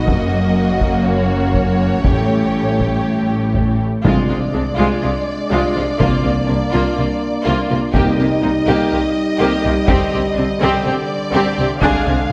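Relentless and dramatic, this cinematic orchestral film-score fragment drives forward on close, dry taiko struck with hard sticks. Above them, lush bowed violins carry an expressive, vibrato-rich melody over a smooth second violin line and focused violas, while clear double basses and rich cellos hold the low end and a soft-attack French horn section sustains chords in the background. Round, soft-mallet timpani join from 4.0 to 8.6 seconds as the harmony moves over a pedal C, all set in a reverberant scoring-stage space.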